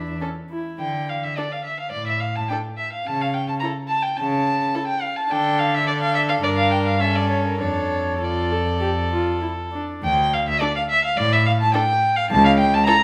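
A wet recital hall reverb surrounds this short cut from a longer piece, a quick classical-period movement for string quartet in D minor, restless and stormy, moving at 97-109 BPM in 4/4 with a rubato feel. The first violin carries the melody up front, its dark, nasal gut-string tone sounding distant yet prominent as it ranges from Bb4 to Bb5. Beneath it, a second violin with a similarly reedy period-style voice holds a narrow second line between A4 and Bb4 from 0.2 seconds. The viola, close and airy in its bowing, fills in the accompaniment, while the cello anchors the bass up front with a rich gut-string tone reaching down to C#2. The harmony circles around D and A over C#, passing briefly through G minor and A7 over G before returning to D at 10.0 seconds as the opening material restarts.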